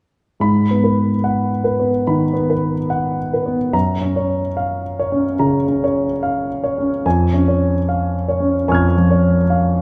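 Neoclassical minimalist piano in G# dorian, this short excerpt carries a melancholic, reflective mood at 72 BPM in 4/4, played with a rubato feel. A solo concert grand piano sounds from 0.4 to 9.8 seconds, spanning E#2 to G#6, its tone intimate and natural with deep bass and audible action noise. The instrument sits up front, yet a wet scoring-stage reverb with a 1.7-second decay surrounds it, and the production leans dark. The harmony moves from G#m7 to F#maj7 at 3.7 seconds and settles on C#/E# at 7.0 seconds. Cut from a longer piece, the passage feels like an inward moment suspended in reverberant space.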